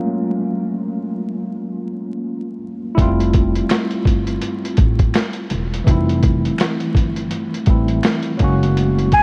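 Soaked in a huge dreamy reverb with vinyl crackle and dulled highs, this nostalgic lo-fi hip hop excerpt opens with a barky tine electric piano alone, colored by cassette tape and a filter sweep, before a woody pizzicato upright bass and a muffled, thumpy sampler-style drum kit with 12-bit grit enter at 3.0 seconds, very quiet finger snaps join shortly after, and a breathy metal jazz flute appears up front only at 9.1 seconds as the clip closes.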